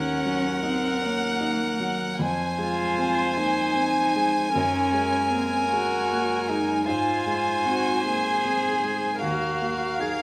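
In a rubato 6/8 at 51 BPM, this fragile, melancholic neoclassical fragment in Eb dorian puts an intimate, up-front chamber violin section on the melody, bowed sul tasto with light vibrato and a soft attack, over a woody solo cello's vibrato-tinged second line, a pure, floating viola and the mellow, vintage tone of a dark upright piano, all moving through Ebm, Fm7, Gbadd9 and Ab to Ebmadd9 inside a moderate scoring-stage reverb.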